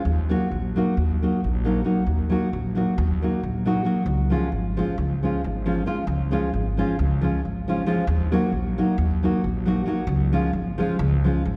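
Wet concert-hall reverb surrounds this festive, virtuosic Balkan wedding-band fragment, heard from further back in the room and cut from a longer piece. It moves briskly at 269 BPM in eighths in a straight 9/8 in Db major, with a woody, thumpy pizzicato upright bass on gut strings entering at 0.1 seconds and a deep, classical thumb-plucked nylon-string guitar joining in accompaniment at 0.3 seconds. The harmony alternates between Ebm and Db.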